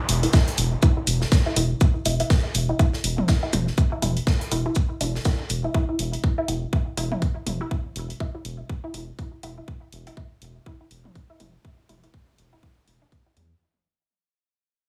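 Lightly reverberant and sparse, this hypnotic minimal techno excerpt with swung sixteenths fades out throughout, built on a tight, tape-warmed kick up front, a round, deep analog bass with tube saturation and sidechain pumping, an overdriven electronic hi-hat, and a juicy, squelchy resonant blip pluck riff colored by phaser, chorus and digital delay, while a brief downlifter opens the clip, a gated 80s kit of hi-hat, shaker and snare in a bright stone room drops away at 5.6 seconds, and delayed electronic toms and percussion blips surface in short bursts, returning from 11.1 seconds.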